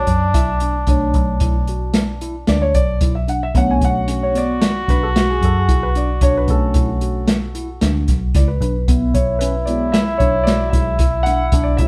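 In a straight 5/4 at 113 BPM, this tense, brooding progressive band excerpt in B dorian sets an up-front open jazz kit with a boomy kick and rolled-off top under a round, punchy foam-muted picked bass, while a dark concert grand takes the solo, a worn, slightly out-of-tune tine electric piano spins mellow arpeggios, and a nasal straight-muted trombone carries a smooth second line, all played live in one room with moderate reverb as the harmony moves from Bm7 to Eadd9/B at 8.9 seconds.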